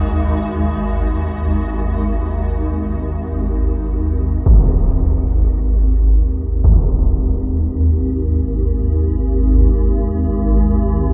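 Dark ambient drone in free time, vast and ominous, where an up-front swarming, detuned granular drone holds low G#1 to D#2 for the full 11.1 seconds beneath a blurred, cloudy granular pad and a faint, breathy wind-like noise texture on D#5 that both fade out by 4.5 seconds, when a huge, bright impact strikes through a low-pass filter, all within a dark production with light reverb, cut from a longer piece.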